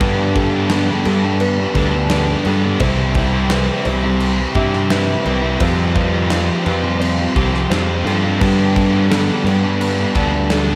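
Post-rock at 86 BPM in a straight 4/4, this hopeful, soaring excerpt is cut from a longer piece and moves through Gadd9, Cmaj7 and Fsus2 before returning to Gadd9. A big rock drum kit drives it with a punchy kick, a medium-tuned snare and crash cymbals, its top end rolled off in a roomy sound. Two overdriven guitars play a riff together, one bright, the other sludgy and sitting in the background, while a growling picked bass with overdrive stands up front beneath them. A very quiet, clean twelve-string electric guitar adds compressed arpeggios, and a felt-muted upright piano plays mellow, intimate arpeggios with audible action noise and tape echo from further back. Holding it all together, a pure, organ-like pad sustains slow-blooming chords with ensemble chorus, under a light studio reverb.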